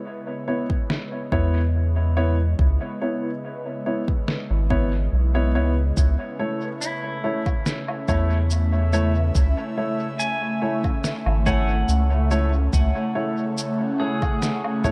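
Ambient dub at 71 BPM in a spacious, deep mood, this excerpt opens with a breathy pad fading in on sustained chords treated with chorus and phaser, moving from C#m7 to A at 6.0 seconds. A dark, woody upright piano plays echoing stabs over a layered, tape-warm electronic kick, a muffled, pitched-down snare with cabasa and woodblock sent through dub echo, and a round, up-front sub bass. From 6.8 seconds a twangy, bright pedal steel guitar adds arpeggios with slide and volume swells through tape echo, all set in light reverb.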